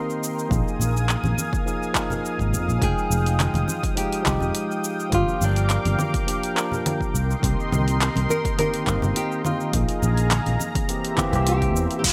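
Sunset chillout with a relaxed, lightly swung feel, where a clean tine electric piano with delay and a thick, warbling detuned pad carry jazzy minor-seventh chords over a smooth R&B kit of hand claps, shaker, hi-hat and crash, a punchy overdriven electronic kick, soft background congas and a growly, up-front fretless bass, while a small fingerpicked nylon-string guitar with delay takes the melody from 2.8 seconds and an electronic downlifter closes this cut from a longer piece at 12.0 seconds.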